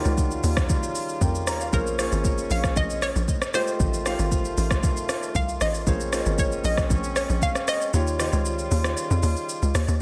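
A tight, punchy log drum bass sits up front with a fast attack and a noisy FM edge, driving this soulful, deep amapiano excerpt at 116 BPM in Bb dorian over chords moving from Eb9 through Bbm9 and F7. A hollow, detuned square-wave pluck carries the bouncy melody with chorus and digital delay, while a polished grand piano plays accompaniment and a mellow woodwind section holds smooth, lightly vibrato chords. The soft, tape-tinged R&B kit of hi-hat, rim click, shaker and kick enters at 0.1 seconds, its kick dropping out at 7.9 seconds, all set in a digital ambience.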